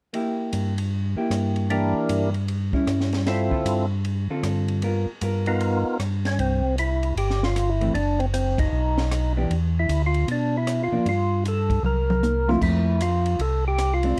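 Dark, lightly reverberant production frames this greasy, bluesy soul jazz organ trio, a clip cut from a longer piece, swinging in 4/4 at 154 BPM in C mixolydian. A round, mellow, lightly overdriven tonewheel organ carries the bass from 0.5 seconds with chorus vibrato and slow rotary speaker, while a fat, percussive second organ with third harmonic percussion and its own slow rotary takes the melody from 1.7 seconds, both sitting up front. A clean, picked hollow-body electric guitar comps with a break in the middle, and a dry cocktail kit with a high-tuned snare, punchy kick and dark cymbals drives throughout, adding a fill after a band accent at 8.5 seconds as the chords move through altered and diminished colours toward Fmaj7.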